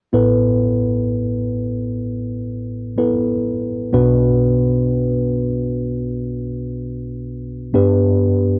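A tine electric piano opens this short pop excerpt at 0.1 seconds, sitting up front with a worn, slightly out-of-tune voice and a light overdrive from a combo amp. The mood is longing and emotional, moving at a slow 63 BPM in a straight 4/4 feel. The piano carries the accompaniment alone, spanning from A1 up to B4. Its harmony moves from Asus2 to Bm at 3.9 seconds and arrives on G at 7.7 seconds. The whole recording has the character of an old cassette, with a warbling pitch drift and a light reverb around the sound.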